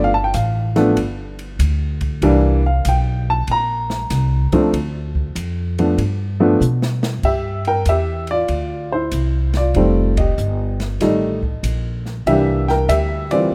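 A dark, worn baby grand piano carries the melody from the opening beat, its mellow, short-sustained tone up front with audible action noise, alongside a woody pizzicato upright bass on steel strings, while the open jazz kit enters at 0.3 seconds, in this warm, swinging jazz piano trio excerpt at 96 BPM in C mixolydian. The piano takes a solo through the first section, which closes with a drum fill at 6.6 seconds, and the trio hits a band accent at 10.1 seconds. The airy kit, with dark cymbals, a medium-tuned snare and a boomy kick, sits behind the piano and bass in a small room with light reverb, all in a rough home demo mix.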